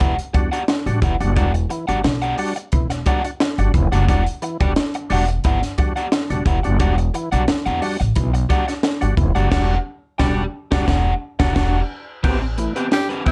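A straight 4/4 funk groove at 88 BPM in E minor rides on a punchy, saturated fusion kit with bright cymbals, a high-tuned snare and sampler grit, under a woody, thumpy pizzicato upright bass, all driving and cool, while crunchy picked electric guitar and thick, key-clicking tonewheel organ stabs with chorus vibrato sit over Em9 before a band accent from 9.5 s leads to Am9 at 12.2 s, where a clear, up-front tenor saxophone enters at 12.9 s in light reverb as this cut from a longer piece ends.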